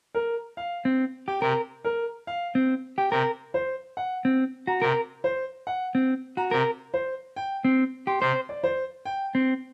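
Moving in a straight triple metre, this hypnotic, propulsive fragment of minimalist classical pattern music sets a brilliant, up-front concert grand piano melody with long sustain from 0.1 seconds against clean, picked electric guitar arpeggios entering at 0.9 seconds, while a brassy pipe organ trumpet stop with baroque voicing and audible chiff provides accompaniment from 1.4 seconds, heard through close, detailed microphones in a moderately reverberant large studio as the harmony moves from Bbsus2 to Gb to C5.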